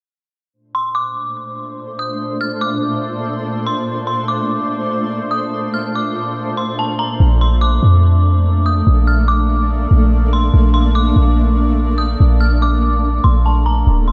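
Dreamy and blissful, this atmospheric cloud-rap excerpt moves at 144 BPM in a half-time feel in Bb major, opening with an eerie, inharmonic detuned synth bell melody treated with chorus, phaser and delay at 0.7 seconds, joined by a shimmering, ethereal pad of sustained chords with an octave-up granular sheen, chorus and reverb, before a deep, boomy, clean 808-style bass arrives up front at 7.2 seconds, all within a dark production with light reverb.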